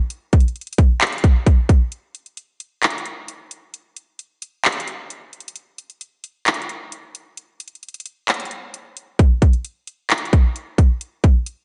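An electronic trap drum kit sits up front through this short hip hop fragment, playing from 0.1 to 11.6 seconds with a hard-clipped kick, metallic hi-hats and handclaps. At 132 BPM in 4/4, the groove has a half-time feel, so the beat feels slower and heavier than the tempo suggests. The kit carries the coarse grit of a vintage 12-bit sampler, which suits the eerie, melancholic mood. A break runs from 1.9 to 9.2 seconds inside a single continuous section. Light reverb and a dark, warm sound with nothing above 10.8 kHz give the production a shadowy, closed-in character, and the clip is cut from a longer piece.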